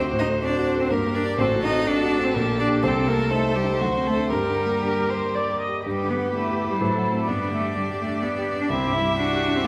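Lively and graceful, this quick classical-period movement for piano quintet in 3/4 unfolds with a rubato feel, setting a clear, close violin melody over a second line from a rich violin and an intense cello, while a distant viola and a dark, up-front grand piano with audible action noise and deep bass fill out the accompaniment, all five parts playing throughout in a wet scoring-stage reverb.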